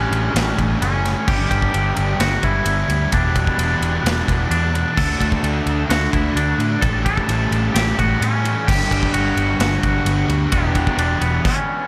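A clean, twangy fingered electric guitar carries the delayed melody over a dark, overdriven semi-hollow guitar riff touched with reverse reverb, a distorted fuzz guitar with analog chorus sitting in the background, a round, punchy foam-muted bass, and an up-front big rock drum kit with boomy kick, snare, crash and ride, the mix soaked in huge ambient reverb in this dreamy, hazy shoegaze and dream pop excerpt at 130 BPM in 4/4, drifting through A7, G, Em7, D and Gmaj7.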